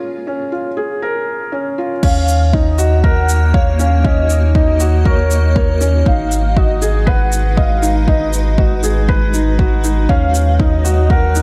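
A steady, straight 4/4 pulse at 119 BPM drives this melancholic, hypnotic piece of piano and strings electronica in Eb minor, cut from a longer track. A soft, felt-muted upright piano opens alone with its intimate riff, touched by tape echo, before the drop arrives at 2.0 seconds. There a deep, overdriven electronic kick and a layered, overdriven crash cymbal and shaker, both re-recorded in a large room, join a round sine sub bass that sits up front and pumps with the sidechain. A velvety, detuned synth lead carries the melody with chorus, vibrato and tape echo, and from 2.7 seconds a blurred, evolving granular pad adds sustained chords with its own built-in reverb and sidechain pumping. The harmony moves from Ebm7 to Abm7 and back, and the overall sound stays dry and close.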